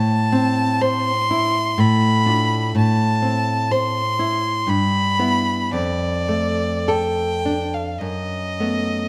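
This romantic duo for violin and classical guitar moves in a slow, rubato 3/4 at roughly 50-62 BPM in A minor, with a yearning, solemn mood. A single bowed violin carries the melody between D5 and C6, its focused tone shaped by vibrato and placed close and up front. Beneath it, a nylon-string guitar provides fingerpicked accompaniment from F2 to C5, sounding warm and acoustic, with audible finger squeak on the strings. The harmony moves from Am through Dm/A, back to Am, then Em/G and Dm/F, before landing on B7/F# at 8.0 seconds. The recital hall reverb lingers for about 1.7 seconds around a dark production, and the 9.1-second passage is cut from a longer piece.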